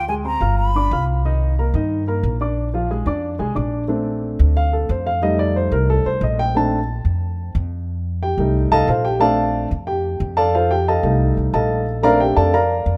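A grand piano carries this lively, danceable jazz cut, taking an up-front solo from 3.9 seconds as the music settles into B-flat major and alternates between Bbmaj7 and F7. The piano sounds intimate and natural, with its action noise clearly audible. Beneath it, a pizzicato upright bass gives a woody, thumpy bottom end at 181 BPM in a straight 4/4 feel. A breathy silver concert flute appears only briefly at the opening, playing a close-miked, tongued, straight-tone line that ends at 1.0 seconds, over the Dm7b5 and G7 that begin a short turnaround continuing through Cm9 and Bb7. A moderate plate reverb adds space to this rough home demo mix, taken from a longer piece.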